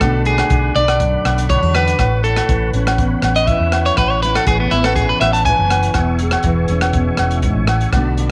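Set in a small room with light reverb, this carefree, danceable highlife guitar band moves at 121 BPM in A major. A bright, twangy electric guitar at the edge of break-up sits up front with slapback-echoed arpeggios until 6.2 s, over a dark fingerpicked acoustic guitar, a round hollow-body bass and a gritty breakbeat kit of tight kick, hi-hat and rim click. Ringing agogo bells add percussion, while a lightly overdriven tonewheel organ, with key click, chorus vibrato and slow rotary speaker, holds chords in the background through the Bm7, Aadd9 and E6 changes.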